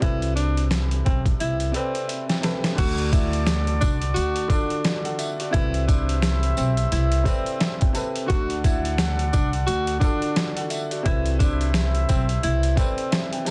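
A breathy tenor saxophone carries the melody in a mellow jazz style, with vibrato, subtone and scooped notes and a touch of digital delay, over a gritty, pitched-down boom-bap drum kit with a thumpy kick and a woody pizzicato upright bass, both up front. This dark, reflective hip-hop excerpt moves at 87 BPM with a swung feel in A dorian, a clear upright piano with long sustain playing accompaniment and a drum fill at 1.4 seconds leading into the next section. At 2.8 seconds a tight, dark trumpet section adds stabs, soon joined by a jingly tambourine in the background, all under light reverb, vinyl crackle and a dense, heavily limited master.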